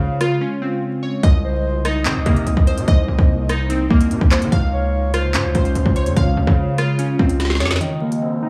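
The distorted 808-style bass anchors this ominous, cold drill fragment at 146 BPM in a half-time feel, its saturated, heavy tone sitting up front beside a hard-clipped kick, woody snare, crisp hats, rim clicks and handclaps from the electronic kit, which enters at 0.2 seconds and drops in a fill before a break at 7.8 seconds. Glassy digital keys spin chorused, filtered arpeggios with slapback echo over an ethereal, detuned pad held in the background, while a breathy flute-like synth lead with vibrato carries a second line from 1.4 to 6.1 seconds. The harmony moves between Dbmaj7 and Cm7 in C phrygian, with a dark, slightly broken-up electric guitar appearing only in the closing break, all set in light digital ambience with vinyl crackle.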